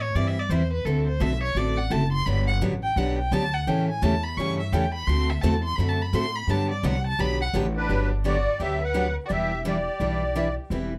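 Lively, charming jazz manouche, cut from a longer piece, built on a woody, thumpy pizzicato upright bass up front and a bright picked dreadnought guitar, joined at 2.3 seconds by a second, boxy guitar sitting in the background. A distant, expressive bowed violin solos with rich vibrato and portamento until a reedy, shimmering musette accordion takes the melody at 7.8 seconds. The production is dark and warm, with light reverb.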